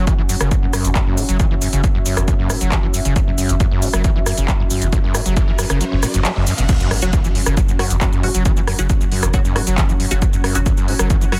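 A dense, heavily limited modern master in a digital ambience frames this short cut from a longer piece of driving peak-time techno, hypnotic and industrial at 136 BPM in a straight 4/4. A punchy, tape-warm electronic kick sits up front alongside a layered techno kit of crash, handclaps, smooth hats, rim click and shaker, with soft clipping on the snare, both re-recorded in a small room. Beneath them a thick, saturated sine sub bass holds F#1 with overdrive and a low-pass filter, while a screaming, squelchy sawtooth acid riff, resonant and aggressive with filter sweeps, distortion, subtle chorus and tape echo, works between E2 and F#3. A deep, moody ambient pad, dark and full-bodied with chorus and built-in reverb, spans C#4 to F#5, and the bass, acid line and pad all pump against the sidechain. A very quiet riser builds from 4.8 seconds, the kick drops out from 5.8 seconds, a band accent hits at 6.2, and at the drop at 6.7 seconds an impact lands. 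From 7.0 seconds a muted, wave-folded dub chord stab with phaser, analog chorus and tape echo sits in the background, and from 8.8 seconds a very quiet swarming drone, detuned and ring-modulated with a granular edge, adds tension.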